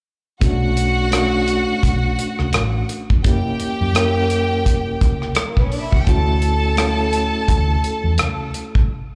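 A swung sixteenth-note groove at 85 BPM in 4/4 carries this bittersweet, cinematic slice of lush 1970s-style soul in B minor, moving from Bm9 through F#7b9 to Dmaj7. A dark, up-front acoustic drum kit with a tight kick, hi-hat and rim click sits over a round, amped hollow-body bass, while a reedy electric piano with fast tremolo and slapback echo plays the accompaniment and a bowed violin section adds a smooth, vibrato-rich second line with its own slapback echo. The mix feels like a live club set heard through the venue's PA, with a rolled-off top and small-room reverb, and the band hits an accent at 8.9 seconds before the cut.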